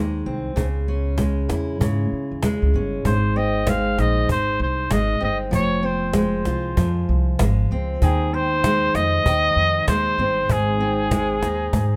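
A warm, up-front fingerpicked steel-string acoustic guitar and a woody, thumpy pizzicato upright bass open this carefree, heartfelt acoustic pop excerpt in Ab major at 97 BPM, with a gentle sixteenth-note swing. A snappy cajon with snares joins at 0.6 seconds, and at 3.1 seconds a clear, punchy trumpet takes the solo melody with light vibrato and a vintage pop tone. Light reverb lends the mix a modest sense of space as a brief Dbm colour gives way to a settled movement between Ab and Fm.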